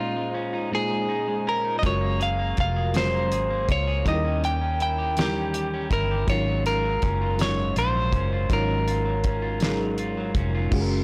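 A slow, straight six-eight R&B groove sets a late-night, yearning mood, with a clean, compressed electric guitar carrying the melody up front through a slapback echo while a twangy, slightly broken-up guitar plays a second line alongside a lush, dreamy FM electric piano and soft pad treated with chorus and tremolo. At 1.8 seconds a dry 70s drum kit with a fat snare and tight kick arrives alongside a round, foam-muted fingered electric bass, as the harmony moves from Bbm11 through Gbmaj9 and Eb7b9 to Ab13sus4. The whole recording sits in small-room ambience with light reverb and a blown-out, overdriven sound, and the guitar melody stops at 10.3 seconds.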